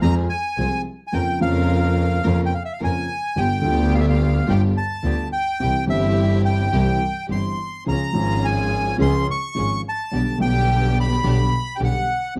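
A reedy, bright bandoneon carries the melody up front, bathed in plate reverb, in this sultry, melancholic tango excerpt at 107 BPM in 4/4 with a rubato feel. A dark, mellow, vintage-toned grand piano accompanies while a rich chamber string ensemble adds stabs, and a clear, focused double bass anchors the low end up front; both the strings and the bass are bowed with vibrato. The harmony moves from Fm through G7, C and Db to G/B, all set in light reverb with a dark, warm production.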